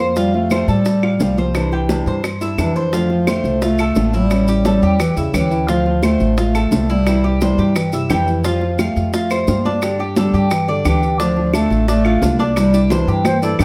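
Relaxed and danceable, this brisk Cuban son and guajira excerpt in F major at 174 BPM features a dark bass clarinet carrying the melody over a fingerpicked nylon-string guitar, metallic double-strung tres arpeggios, woody up-front pizzicato upright bass, round low-tuned bongos, soft-handed congas, grainy maracas and distant claves, with an airy, unsteady silver flute slipping in at 13.2 seconds alongside a drum fill, all in light reverb.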